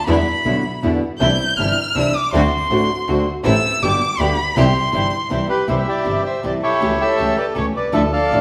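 A rubato 3/4 pulse at 160 BPM carries this passionate, playful tango in C major, cut from a longer piece. A bowed violin, up front with vibrato and portamento, takes an expressive solo from the start until 5.7 s over fingerpicked acoustic flamenco guitar, a biting, nasal bowed double bass and soft-attack sul tasto stabs from a rich, floating chamber string section in the background. At 5.5 s the strings stop and a reedy, vintage-toned bandoneon enters up front with the melody, all within a live-sounding stone room's wet reverb.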